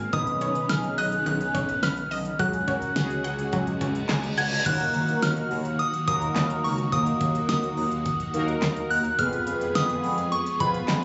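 A straight 4/4 pulse at 106 BPM drives this nocturnal synth-pop excerpt in Eb minor, cut from a longer piece, with a layered electronic pop kit of knocking kick, fat snare, crisp hats, handclaps and crash cymbal carrying a tape-warm sheen. A smooth, detuned sawtooth-and-square bass glides between notes with portamento underneath, while a mellow synth brass adds dark, round accompaniment shaped by a filter sweep, vibrato, chorus and phaser. Up front, a soft, pure FM bell sings the melody high in its register with chorus and delay, and a lush vintage string machine holds full-bodied sustained chords with a slow attack in the background. A bright, detuned analog pluck spins arpeggios with chorus and delay until about 4.6 seconds, as a reverse cymbal rises from 3.8 seconds into an electronic impact at 4.7 seconds that opens the second section on Ebm, after earlier Badd9 and Dbsus4 chords and a closing turn to Fdim. 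The whole mix sits in club reverb and compression, heard as if captured on a phone in the room, with a dulled top end.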